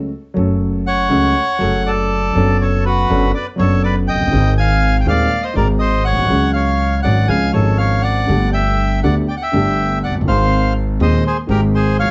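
A reedy, airy bandoneon carries the melody up front, entering at 0.9 seconds and singing between F#4 and G#5 with a bright edge. This is a passionate, tense tango fragment in F# harmonic minor, set at 122 BPM in 4/4 but played with a rubato feel. A dark concert grand piano opens the recording alone at 0.0 seconds as accompaniment, its mellow, smooth tone, deep bass and short sustain giving it a vintage character close to the listener. A pizzicato upright bass with steel strings joins at 0.4 seconds, woody, growly and thumpy in the low register. The harmony moves from F#m through Bm7/F#, G#, C#sus4, C# and Gadd9 before landing back on G#. Light reverb surrounds the trio, and the top end is rolled off above 7.7 kHz in this short cut from a longer piece.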